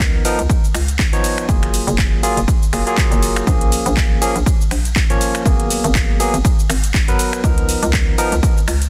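Deep house with a smooth, late-night mood and a swung 4/4 groove, heard as a short cut from a longer piece. A barky tine electric piano plays chord stabs through a combo amp, sitting up front with sidechain pumping and tape echo, moving through C#13, F#maj9, A#m7 and G#m9 before returning to C#13. Beneath it, a hollow, knocking FM bass with a fast attack and decaying notes gives a bouncy pulse, also pumping against the sidechain. A punchy, overdriven electronic kick drives the track alongside an overdriven house kit of cabasa, finger snaps, handclaps, ride cymbal and metallic hi-hats, both drum parts layered and re-recorded in a large room. The whole is set in digital ambience with a dense, heavily limited modern master.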